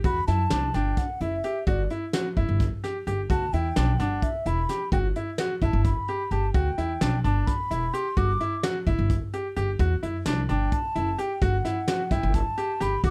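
Set in a brisk, straight 7/8 at 259 BPM counted in eighths, this progressive instrumental excerpt from a longer piece feels intricate and bright. A soft brush drum kit keeps hi-hat, a tight kick and a fat snare at a distance, its roomy, rolled-off sound sitting back in the mix. Up front, a pizzicato upright bass gives a woody, steel-strung low line between E1 and F#2, while a brilliant grand piano plays open, short-sustained arpeggios in a narrow band from D4 to G4. A pure, mellow baroque flute enters at 0.1 seconds and carries the melody as a solo throughout, its wooden tone shaped by tongued notes and vibrato between D5 and D6. The harmony moves from Am to G6 at 1.7 seconds and to A5/G at 8.2 seconds, all in a dry mix with little reverb.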